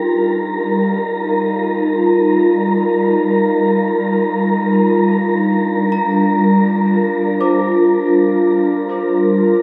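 A glassy, ethereal FM pad holds sustained chords up front through ensemble chorus and phaser, moving from Ebadd9/G to Gm7 at 4.9 s in this serene, reflective ambient passage in free time and G minor, while a breathy, wind-like tuned noise texture hovers alongside it and a delicate, bell-like celesta fades in with tape-echoed arpeggios in the background across the full 9.6 s, the whole scene set in a huge, wet reverb space.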